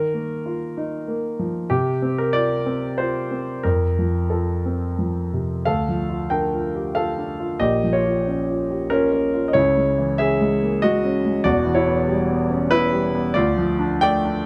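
A solo concert grand piano with a deep bass, set up front in a lightly reverberant room, carries this reflective, wistful fragment of a neoclassical minimalist piece in a rubato 3/4 at around 88-96 BPM, tuned to A4 = 438 Hz and ranging from E1 to G5, moving from suspended Ebsus2 and Csus4 colours through F before shifting at 5.7 s into a darker minor-chord passage of Dm, Bbm, C#m and Em that returns to Dm.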